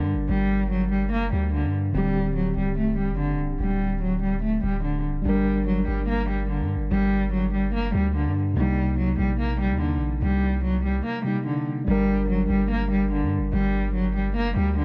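A dry, gritty hardware recording carries this menacing, ominous half-time drill cut from a longer hip hop piece: a dark, woody bowed cello with vibrato and a smooth top leads up front through a low-pass filter and analog delay, a mellow, clean tine electric piano heard through built-in speakers adds filtered accompaniment, and a deep, sine-toned 808-style bass with a fast attack and long decaying sustain sits up front, before a brief break at 11.1 s gives way to a new section at 11.9 s.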